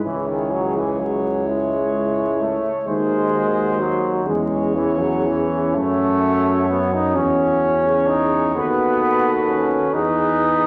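Classical, hymn-like brass band music in a slow, rubato 6/8 at 43 BPM, tender and warm in mood, sets a dark, smooth trumpet section's melody over a mellow French horn section's second line with light vibrato, a bright trombone up front and a punchy euphonium in the background as accompaniment, and a distant, roomy tuba on the bass, all heard through a wet scoring stage reverb with vinyl crackle across this short cut from a longer piece, moving from C#m toward a closing E chord at 9.9 seconds.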